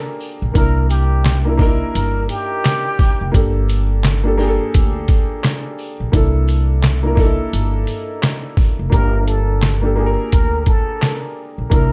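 A dark, reverberant production frames this reflective boom-bap hip-hop excerpt in G dorian at 86 BPM, where a muffled, pitched-down sampler-style drum kit with a thumpy kick, handclaps, hi-hat and shaker sits up front with a pizzicato upright bass that sounds woody and thumpy. A worn, slightly detuned upright piano with a tape-like tint carries the accompaniment throughout, while faint, jingly sleigh bells sit far in the background until 8.8 seconds. A breathy trumpet with plunger mute plays an intimate, jazz-style solo line with wah-wah inflections, vibrato and scooped notes, heard at the opening and again from 8.9 seconds.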